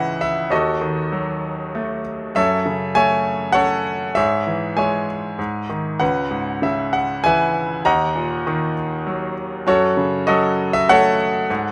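A bright, up-front grand piano plays alone from the start: a lyrical classical solo in 3/4 at about 98 BPM, shaped with relaxed rubato across a range from C#2 to A#5. The harmony moves from C#m through F#m7 and C#m7 to D#m and F#m, and the audible action noise lends an intimate closeness under a light reverb. This 11.7-second fragment of a longer piece has a warm, unhurried mood.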